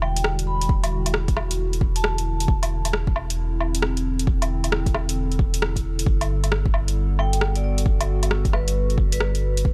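A dry, close mix with little room around it opens this short cut from a longer future garage track, moving at 134 BPM in 4/4 with a 16th-note swing. The mood is ghostly and melancholic, carried by a lo-fi, warbling pad whose slow-attack chords sit dark and nostalgic under chorus and its own reverb, pumping against the sidechain as the harmony moves from Em9 to C69/E and then Gmaj9. A soft dub sub bass, round and deep, holds up front beneath it, also pumping with the sidechain. The deep house kit brings metallic hats, rim click and woodblock, overdriven and placed forward with studio reverb, and an overdriven electronic kick with a layered, deep thump joins at 0.7 seconds. A vibraphone struck with medium hard mallets carries the melody, its smooth, ringing tone shaded by slow motor vibrato and tape echo; it sounds at the opening and returns at 7.2 seconds.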